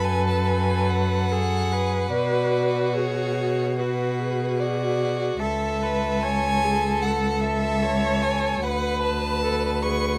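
A bowed cello sits up front with an even, vibrato-rich tone, carrying the bass beneath this slow, serene romantic movement for string quartet at 74 BPM in 4/4, played with a rubato feel. Above it, one violin sings a focused melody with a smooth top, while a second violin and an intense viola with light vibrato fill the inner harmony through F#m, Bm, A/C# and Bm7/D. Close, detailed microphones and light reverb give this tender excerpt an intimate clarity.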